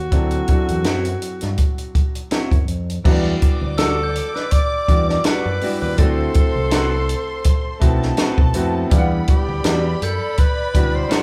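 A clear alto saxophone with vibrato sings the melody over boxy, short-sustained grand piano, a growly fingered electric bass and an up-front cocktail drum kit with dark cymbals and a punchy kick, as a slightly broken-up, lo-fi electric guitar riff joins at 0.9 s, a lush bowed string section adds a smooth second line from 3.1 s and a ringing glockenspiel glints in the background from 3.8 s, giving this romantic 1970s-style soul excerpt a gentle swing and a live-in-one-room feel under moderate studio reverb as the harmony sways from D9 to Em9, then D13 and back to Em9.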